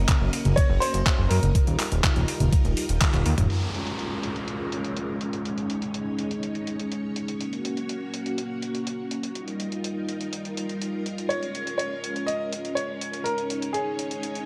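A clear, worn grand piano melody with digital delay, lush vintage string-machine chords with ensemble chorus and a fat, detuned analog bass open this bittersweet, danceable italo disco excerpt in Bb minor at 123 BPM, joined at 0.1 seconds by a thumpy overdriven kick and an overdriven, detuned 8-bit drum machine of congas, handclaps, hi-hat and toms with gated reverb; a drum fill at 3.0 seconds leads into a section where the bass and kick drop away, an electronic downlifter sounds, a filter sweep moves across the strings, and the piano returns at 11.3 seconds, set in light reverb and digital ambience.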